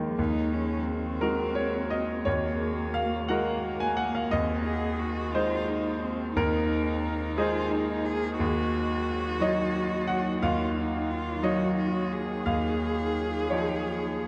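A brilliant, up-front concert grand piano with deep bass carries the accompaniment in this melancholic, longing neoclassical piece for piano and strings, moving in a rubato 6/8 at 58 BPM through Gbadd9/Eb, Ab/Eb, Ebm7 and Dbadd9/Eb, while a single rich bowed cello enters at 0.2 s with a soft attack, vibrato and expressive portamento as a second line, and a glassy, ethereal FM pad with ensemble chorus, phaser and its own reverb holds dark, slow-blooming chords in the background, all within a vast, echoing cathedral space, in a fragment cut from a longer work.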